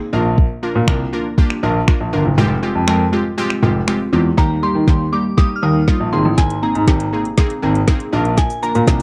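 Carefree and euphoric, this dance-pop excerpt moves at 120 BPM in Eb major, with a glassy, crystalline wavetable pluck carrying the chords through chorus and sidechain pumping while a clear grand piano, full of audible action noise, plays the pumping bass line from the start. A smooth R&B kit with a soft kick, woody snare, metallic hats, snaps and shaker sits up front from 0.4 seconds, its kick dropping out from 2.4 to 4.4 seconds. At 4.4 seconds a build-up begins with a drum fill and a filter sweep as a soft, mellow FM bell enters high above on the melody, all captured in a dry, close 1970s-style studio sound with digital ambience.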